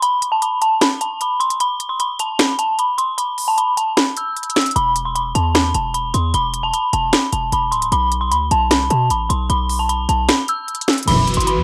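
A home cassette recording with light reverb carries this eerie, dark half-time trap excerpt at 152 BPM, where a warbling, inharmonic FM synth bell sings a detuned melody through chorus, phaser and tape wear over an up-front electronic kit of crisp hats, sharp snare, finger snaps and crash. A punchy, heavy 808 bass enters at 4.8 seconds under a rootless Cmaj13. At 11.1 seconds lush bowed symphonic string stabs and an electronic downlifter mark the turn to Esus2, joined at 11.3 seconds by a brief ethereal, airy pad.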